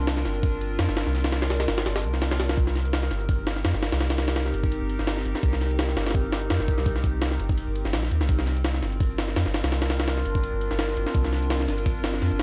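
A frenetic 168 BPM jungle groove in 4/4 with a light 16th-note swing drives this nostalgic drum and bass excerpt in C minor, where a compressed, pitched-up sampler-style drum kit with a thumpy kick, high-tuned snare and ride cymbal sits up front from 0.1 seconds, a deep, round dub sub bass with tube saturation holds the low end, and a warbling, lo-fi, detuned pad with chorus, phaser and built-in reverb sustains mellow Bbadd9 and Cm7 chords behind them, all carried by a dry, gritty hardware sound flecked with vinyl crackle.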